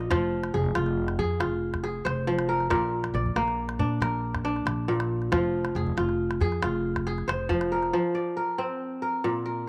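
In a straight 12/8 pulse, this reflective, hypnotic excerpt of West African traditional string music sets a ringing, crisp fingerpicked kora's up-front arpeggios over a woody, thumpy pizzicato upright bass and a small, close calabash, all in a light reverb, until the bass and calabash stop at 7.9 seconds and the kora carries on alone to 9.7 seconds.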